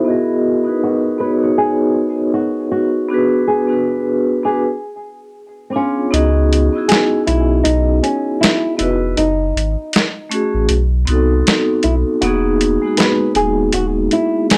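Swung 16ths at 79 BPM in 4/4 carry this melancholic, hazy lo-fi hip hop excerpt in C# minor, where a dark, thumb-plucked flamenco guitar melody softened by a low-pass filter floats over ringing, metallic vibraphone chords with slow motor vibrato and a cassette-tape, boxy small-room tone through the filter sweep of the first section, before a thick, saturated sub bass and a compressed, gritty sampler-style kit of hi-hat and medium-tuned snare join up front at 6.1 s, set in a dry hardware sound with light reverb.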